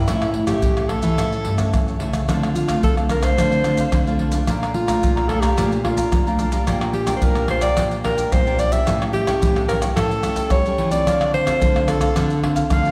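Set in a reverberant recital hall and heard from further back in the room, this nostalgic, yearning samba-choro excerpt features a breathy, subtone alto saxophone with a soft attack and vibrato carrying the melody up front in jazz style, over close percussion of maracas, tight surdo, pandeiro and tamborim, while a crisp, bright picked cavaquinho, a full-bodied fingerpicked classical nylon-string guitar and a deep nylon-string guitar bass with audible finger squeak sit in the background.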